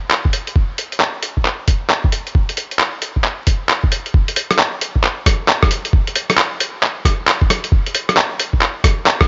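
Future garage at 134 BPM in 4/4 with a 63% swing on the sixteenths, this short, nocturnal and rainy fragment is cut from a longer piece and rests entirely on drums. A lo-fi sampler-style kit of handclaps, hi-hat and rim click comes in at 0.1 seconds, joined at 0.3 seconds by a thumpy electronic kick, both compressed, muffled and tape-warm, re-recorded in a small room and sitting up front. The sound is dry with vinyl crackle and a dull top end, shifting from its opening section into a second one at 4.1 seconds.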